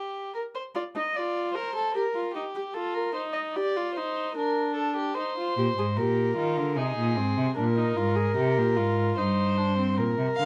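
Lively and elegant, this baroque-style fugue for string quartet in 3/4 is a short cut from a longer piece, played in period style on gut strings. A dark, nasal violin opens the second line at once, soon joined by a close viola with an airy bow, and a cello with light vibrato enters on the bass at 5.6 seconds. A reedy violin carrying the melody appears only at 10.4 seconds, as the passage closes, and the production is dark with light reverb.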